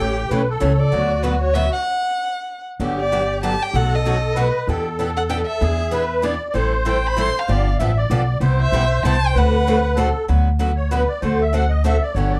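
A vibrato-rich bowed violin leads with expressive portamento and a soft attack, sitting up front with a touch of plate reverb, until it drops out at 10.0 s and leaves a reedy, shimmering musette accordion to take a brief solo. Underneath, a bright, picked parlour steel-string guitar accompanies and a woody, thumpy pizzicato upright bass on gut strings anchors this charming, lively jazz manouche swing in 3/4, with a short stop from 1.9 to 2.8 s. The production is dark and warm in a small room, and this is a fragment of a longer piece.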